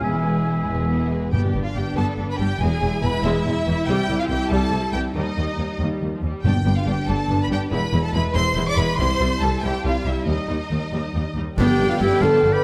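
Lush violins with expressive portamento carry a soaring melody over a more distant second violin line, intense violas, a dark French horn section, and bowed cellos and double basses, while a pure flute and a clear, close oboe touch in at the start of this heroic, cinematic adventure cue in 6/8 at 94 BPM in G mixolydian. Timpani sound in the background at 1.3 and 6.4 seconds as the chords move between E, G, C and Eb. At 11.6 seconds the oboe returns as a very quiet trombone section, a mellow tuba, and snare drum, bright clash cymbals and bass drum join, inside a moderate scoring-stage reverb.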